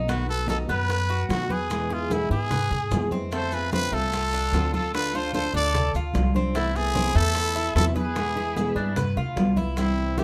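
Danceable and warm, this short excerpt of Cuban son and guajira moves at 149 BPM in a straight 4/4. A growling trumpet sits up front and carries the melody, its brilliant, raspy tone marked by vibrato, scooped notes and a gritty, close-miked edge. Beneath it, a thumb-plucked nylon-string guitar supplies classical-flavored accompaniment while a Cuban tres adds bright, metallic arpeggios from its doubled strings, and a woody, thumpy upright bass anchors the low end with growly pizzicato. Congas with a thick-skinned, soft-handed sound, tight high-tuned bongos and grainy maracas stay in the background. From 3.3 to 9.3 seconds, a distant chamber violin section adds an earthy bowed second line with light vibrato, all set in light reverb over chords moving from B7 through E, F6 and Amadd9/C to G7.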